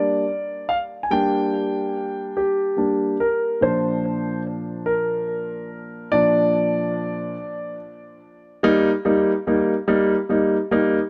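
Pop piece for solo grand piano, tender and swaying, moving in a slow 6/8 at 48 beats per minute in Eb major, cut from a longer piece. The piano sits present and polished up front, ranging from Bb2 to Ab5 with a touch of tape echo, while the chords pass from Gm to Bb and settle on Eb at 8.6 seconds as a new section begins. Light reverb and a dark, warm production give the short 11-second passage an intimate glow.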